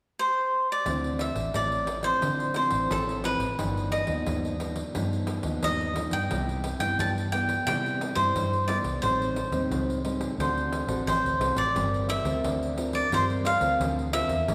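A straight 4/4 pulse at 88 BPM carries this bittersweet, nostalgic slice of samba and choro, cut from a longer piece and tuned slightly below standard pitch at A4 = 437 Hz. A bright, crisp cavaquinho opens alone at 0.2 s, picked and up front as it sings the melody between A4 and A5. At 0.9 s the rest of the group joins: a warm, thumb-plucked classical nylon-string guitar comping from G2 to Bb4, a dark, round, foam-muted vintage electric bass with an amped, punchy tone, and a jingly pandeiro that sounds compressed and saturated. The harmony moves through Dm9, Gaug7, Cmaj7, Am7b5 and D7 before settling on Gm7, giving the line its wistful pull. A wet scoring-stage reverb with a 1.9-second tail places the players in the generous space of a church or concert hall.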